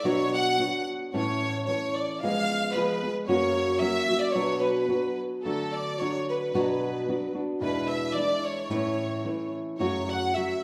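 Set in a 2/4 metre but played with a free, rubato feel, this festive, proud mariachi fragment is cut from a longer piece of Mexican folk music. A lush studio violin section carries the melody up front, its bowed ensemble tone focused and rich with vibrato. Beneath it, a classical nylon-string guitar supplies the accompaniment, thumb-plucked on fresh strings with an acoustic, warm sound that sits just as close. Both parts play throughout, and a second passage opens at 5.5 s, where the harmony settles onto a D chord before moving through Bm, E7, A and F#m. A wet recital-hall reverb surrounds the pair, lending the short performance a sense of ceremony.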